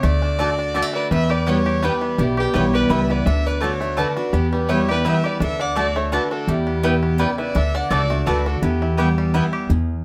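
This rustic, haunting bluegrass excerpt in E dorian opens at 168 BPM in 3/4 with a dark, bowed fiddle melody alongside a twangy fingerpicked banjo melody, a jumbo steel-string acoustic guitar with fresh strings and audible finger squeak, and a growly, thumpy upright bass sitting up front, all circling between D and Em. A woody mandolin adds picked double-string stabs from 0.4 s, and a nasal, metallic lap resonator guitar with slide enters at 1.0 s to carry a mellow second line. A moderate studio reverb gives the ensemble a natural room sound.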